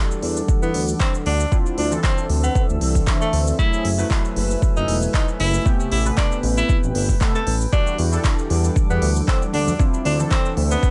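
Warm and moody, this deep house excerpt moves with a gently swung 16th-note feel, cut from a longer piece. An up-front electronic kick, deep and layered, anchors a drum kit of cabasa, handclaps and smooth hi-hats set in a small room. A smooth synth bass with a sawtooth and square-wave tone and vibrato sits forward in the mix and pumps against the kick, as do a retro, glossy chorused polysynth playing detuned pulse-wave stabs with filter sweeps and tape echo, and a dark ambient pad that holds slow-attack sustained chords in the background. Over this, a jazz-style tenor saxophone takes the solo from 0.6 seconds, its tone warm with a smooth top and light vibrato, roughened by vintage 12-bit sampler grit and trailed by delay. Bright, thin-skinned congas played with soft hands slip in briefly around 9.4 seconds while minor-ninth chords drift beneath, all wrapped in a digital ambience with a rounded, dark top end.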